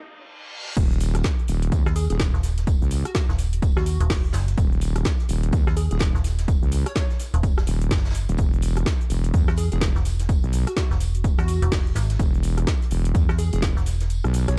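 A dark, dry mix opens this aggressive, swaggering bass house excerpt at 126 BPM with swung 16ths, as a reverse cymbal gives way at 0.8 seconds to a drop built on a heavy, saturated wobble bass with chorus and a punchy, overdriven electronic kick up front, a garage drum kit with woody snare and metallic hats, and a distant, roomy jazz brush drum kit in the background, joined at 1.9 seconds by a metallic, digital FM bass and then a catchy, detuned square-wave unison lead with vibrato, tape echo and cassette tape character sitting behind.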